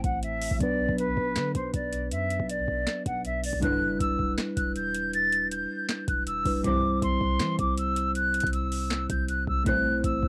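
A mellow concert flute carries the melody across this dark, menacing trap excerpt, its pure, vibrato-touched tone sitting up front yet sounding slightly distant. The track runs at 159 BPM in 4/4 with a half-time feel in E minor, driven by a booming analog drum machine whose deep kick, tonal snare, metallic hi-hats and handclaps are overdriven, with a short room on the snare, claps and hats. A warm, sine-based 808-style bass with a fast attack and decaying tail anchors the low end, while a clean tine electric piano, heard through its built-in speakers, supplies the accompaniment. Brief stabs from a lush, bowed symphonic string section appear in the background at 3.6, 6.6 and 9.7 seconds, expressive with vibrato and portamento, as the harmony moves from Am and Bm to Em7, C and back to Am. Cassette tape coloring on the flute, electric piano, strings and drums, along with little reverb, gives this home recording a dry, intimate character.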